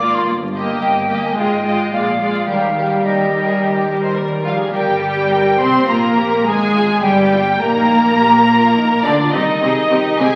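Classical orchestral excerpt in Eb major at 105 BPM, restless and stormy, where intense, vibrato-laden violins carry the melody up front while a second violin line and a pure, silvery flute in the background trace supporting lines. Smooth, lush violas fill the accompaniment, and dark cellos with soft attacks and portamento join rich double basses on the bass. Dark, distant French horns enter at 4.4 s with sustained chords, all heard through a wet scoring-stage reverb and the crackle of a very old 78 rpm record.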